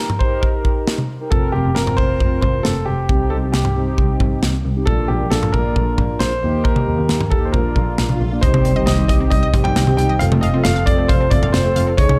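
Synth-pop with an upbeat, bright mood and a straight 4/4 drive, this short excerpt from a longer piece opens with a warm concert grand piano carrying the melody, its intimate tone revealing audible action noise and long sustain through a tape echo. Beneath it, mellow synth brass provides round, brassy, detuned sawtooth accompaniment with a filter sweep and chorus, while a polished modern studio drum kit sits up front with a punchy kick, a medium-tuned snare, toms and an airy hi-hat. A clear double bass, bowed by one player with vibrato and an intense yet distant quality, enters at 1.3 seconds. An electronic swell rises from 7.7 seconds into a background impact, and at 8.4 seconds the second section brings in an evolving, resonant pad that stays very quiet and a decaying analog pluck playing arpeggios in the background with chorus and tape echo. The overall production is dark, with light reverb and small room ambience.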